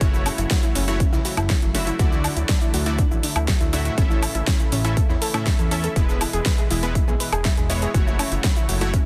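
Expansive and hopeful, this progressive house passage cycles through F#m7, Dadd9, A and E, as a punchy, up-front electronic kick and a big-room dance kit with a huge snare and metallic hats drive a fat, saturated analog bass, airy supersaw stabs and a soft, round pluck arpeggio with lush chorus and tape echo, while a bright, nasal unison pad sits in the background and a crunchy, gritty breakbeat kit lurks very quietly beneath, with sidechain pumping on the pad, pluck, stabs and bass, all inside a dry, dense, heavily limited modern master.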